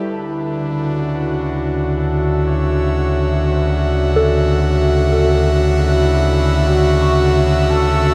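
Ambient music at a slow 63 BPM in 3/4, this short excerpt cut from a longer piece floats in a warm, weightless mood over a single Dmaj9 chord. An airy, breathy pad sits up front with sustained chords, its bright, chorused tone built on a soft noise layer that blooms in with a slow attack and lingers on a long release. Beneath it, a deep, round sub bass holds a steady D2, while a gentle FM synth bell traces arpeggios in the background, its pure, decaying notes coloured by chorus, phaser and tape echo. From 0.1 seconds a distant, roomy flugelhorn carries a soft solo melody in a classical style, fading in through to 8.1 seconds and trailing tape echo. The dreamy mix is soaked in a huge ambient reverb with an 8.8-second tail, blurring the parts into one hazy wash.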